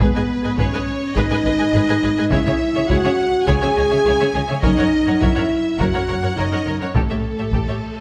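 Sombre French horns hold sustained chords at the front of this dark, epic orchestral film cue, while a lush violin section carries a focused, vibrato-laden melody over a soft-edged second violin line, intense violas, woody background cellos and distant double basses, with close, dry taiko drums played with hard sticks beneath a lavish scoring-stage reverb and a huge, bright, very quiet cymbal swell arriving at 7.8 s.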